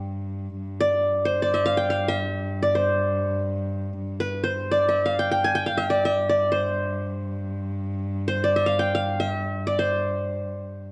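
In free time, this stately Turkish makam ensemble fragment in G makam hicaz sets a bright-edged, plectrum-plucked qanun melody up front, ranging from B4 to Ab5, over an intimate, nasal cello drone on G2 played sul tasto with light vibrato and an airy bow, heard in a moderate recital hall reverb with a dark, warm production across its 10.9 seconds.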